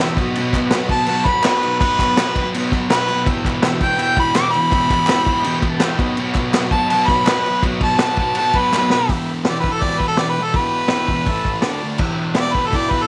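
A straight 4/4 beat at 165 BPM drives this gritty, raw garage rock excerpt: an up-front vintage drum kit with a punchy kick, medium-tuned snare and dark cymbals, very quiet distant handclaps, and a thick, double-tracked fuzz guitar riff over a buzzy, overdriven combo organ holding chords in the background. A clear, close-miked harmonica with overdrive carries the melody with light vibrato and scooped notes, while the organ slips in a fill at 5.4 s. A drum fill leads into 9.1 s, where the music settles into E minor and the harmonica takes a solo, all set in a moderate echo-chamber reverb with studio ambience.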